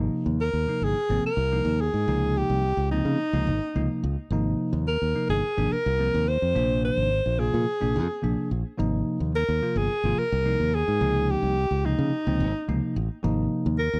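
Bright and soaring, this 14-second excerpt of electric jazz fusion at 108 BPM in a straight 4/4 features a clear, up-front alto saxophone melody with vibrato and a soft attack entering at 0.4 seconds, over a bell-like tine electric piano and a punchy, direct fingered electric bass, moving through Abadd9, Dbmaj9#11 and Bb9 chords in a dry, close 1970s-style studio sound.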